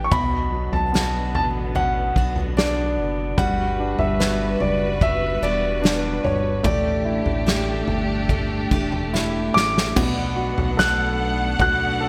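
Bright 1980s-style digital production with a moderate plate reverb frames this hopeful, emotional pop ballad excerpt at 73 BPM in 4/4, moving through Bmadd9, Gmaj7 and A7sus4 before reaching Bm7. A dark, mellow baby grand carries the melody over an intimate concert grand accompaniment with audible action noise, a lush, bowed string section, a full-bodied jumbo steel-string guitar picking arpeggios in the background, and a glossy, retro chorused synth bass built on a pulse-wave pluck. An acoustic drum kit played with bundle sticks, its punchy kick, snare, toms and crash wrapped in gated reverb, plays a fill from 9.1 to 10.0 seconds, and at 10.0 seconds a distant, expressive violin section enters on F#5 with soft attack and portamento.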